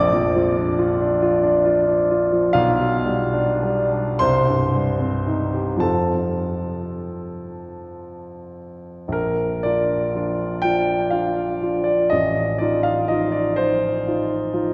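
In a slow, rubato 12/8 lilt of roughly 33-46 dotted-quarter beats per minute, this romantic classical nocturne for solo piano drifts in a serene, dreamy mood in Bb major, its harmony moving from Bb through G7/B, Cm and F before a new section begins at 9.1 seconds and turns toward F7/A. The grand piano, spanning A1 to D6, sounds polished and present, sitting up front with a long, warm sustain. A lush church reverb with a 3.7-second tail surrounds the instrument in this short cut from a longer piece, which ends at 14.7 seconds.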